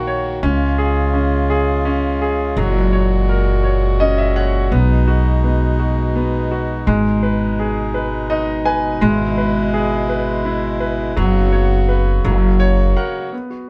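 Set in a gently rolling six-eight lilt, this is a romantic, tender pop ballad, heard here as a short section cut from a longer piece. A clear concert grand piano carries the accompaniment from the start, its tone smooth and vintage with a deep low end, and it steps forward with short fills at 3.6, 7.9 and 12.2 seconds. Beneath it, a pedal harmonium holds sustained chords with a reedy, breathing quality, mellow and airy. An upright bass anchors the harmony with woody, thumpy pizzicato on gut strings, dark and acoustic. All three instruments sit up front, captured as a band playing together in one room with light reverb. The harmony drifts from C# through F#add9, B6, G#m and E/G# before settling via F#sus4 onto F#.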